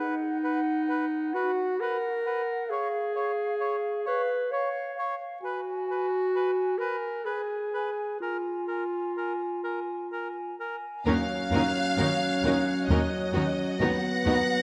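Bathed in the wet reverb of a scoring stage, this moving, hopeful cinematic orchestral piece in a rubato 3/4 at 66 BPM opens with an up-front, clear solo clarinet, a pure, hollow silver flute and a soft-attacked oboe. At 11.0 seconds a rich bowed violin section enters, taking the melody with smooth vibrato over a second violin line, a focused viola section, a distant cello section, a smooth double bass section, and a mellow, roomy French horn section sustaining chords.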